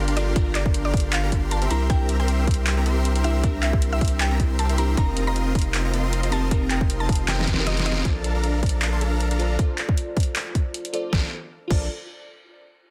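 A huge, detuned supersaw riff drives this bright, playful future bass drop, its compressed unison sawtooth stack pumping against the sidechain and trailing dub echoes. Beneath it, a saturated sub bass sits up front with a thick, sustained weight, while a hard-clipped electronic kick punches hard through the mix. A dubstep kit, re-recorded in a large room, adds a deep snare, handclaps, hi-hat and crash cymbal in a half-time feel with swung sixteenths. Glassy digital keys shimmer with chorus and a filter sweep, and a woody, round FM pluck carries the melody with short, decaying notes until it stops at about 8 seconds. Over Gm7, C7 and F7sus4 chords, a drum fill starts at 7.3 seconds and the kick drops out at 7.7 seconds, before the music settles onto Bbmaj7 at 8.1 seconds in a dense, heavily limited, nearly dry mix.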